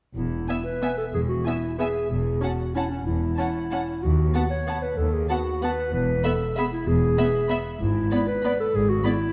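A mellow clarinet sits up front, carrying a second line through this sweeping, elegant orchestral ballroom waltz in E major, moving at 189 BPM in 3/4 with uneven, rubato beats. Cello and double bass sections anchor the bass from 0.2 seconds, and at 0.5 seconds the strings join: a dark, woody violin section holds the melody in the background, a second violin section adds an intimate counterline, and a dark viola section fills in the accompaniment, all bowed sul tasto, the melody violins with vibrato and the others with light vibrato. The chords move from E through F#7 and B7 back to E, and a moderate scoring-stage reverb gives the dark, warm production a sense of space before the cut ends at 9.3 seconds.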